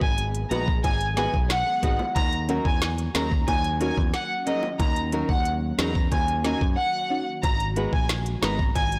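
Dancehall in Eb minor at 91 BPM, sultry and tough, where an up-front violin section sings a lush, bowed melody with vibrato and digital delay over fingerpicked nylon-string guitar arpeggios with finger squeak, a dark, round picked bass, a knocking electronic drum kit with woody snare and smooth hats, low-tuned bongos and a deep nasal chord stab with chorus in the background, a very quiet glassy FM pad, and a barely audible downlifter from 0.2 to 2.2 seconds, all in a blown-out, overdriven recording with light reverb and a silent gap at 6.8 seconds.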